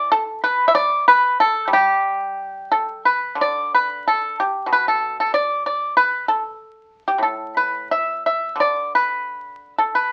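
Pastoral and elegant, this short excerpt from a longer piece of Chinese traditional music features a solo pipa in G gong mode, moving with a rubato feel around 86-96 BPM in 2/4. Played with fingerpicks, the acoustic pipa sounds bright, dry and percussive, sitting up front and ranging from A2 to E5 as one phrase is stated and then returns at 3.4 seconds. A moderate studio ambience surrounds it, while the crackle of a very old 78 rpm record lends the sound an aged patina.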